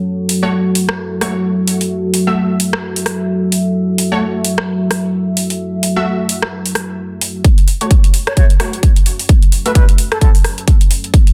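This short cut from a longer bass house track has a dense, heavily limited modern sound, set in a moderate plate reverb that gives the parts a tight sense of space. A dark analog pad opens at once with sustained, moody chords, detuned sawtooth and sub-octave weight held up front, with chorus and sidechain pumping. A big-room dance drum kit with metallic, overdriven hats and rim click comes in at 0.3 seconds, and bold orchestra-hit-like synth stabs follow, detuned sawtooth layers with a noise edge and a fast, decaying pluck, trailed by reverb and digital delay and pumping with the pad. The mood is aggressive and swaggering, with a swung groove in four. At 7.4 seconds a punchy, overdriven electronic kick drives a build-up, and at 8.3 seconds a reedy, airy concert flute slips in briefly with a straight, tongued line echoed by digital delay.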